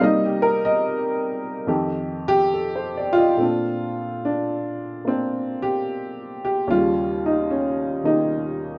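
Loosely swung eighth notes at a rubato 73 BPM in 4/4 carry this relaxed solo jazz fragment in Bb major, where a lone upright piano with a woody, smooth, slightly detuned vintage tone spans Eb2 to Eb5 and sits up front in moderate studio reverb, moving through Cm7 and F9 before settling on Bbmaj9 at 3.4 seconds and Eb9 at 6.7 seconds.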